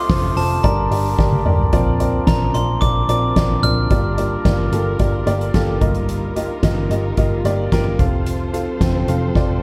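Piano-driven pop with an earnest, driving mood, heard in a short cut from a longer piece. An up-front upright piano, woody and slightly detuned with audible action noise, plays the accompaniment alongside a dark, foam-muted picked electric bass and a soft-mallet drum kit with a fat snare and boomy kick, while a lush bowed string section with vibrato and portamento sits in the background. A bright, bell-like glockenspiel played with brass mallets carries the melody until 4.4 s, a drum fill arrives at 1.2 s, and the piano takes a fill from 5.0 s, set in a small room.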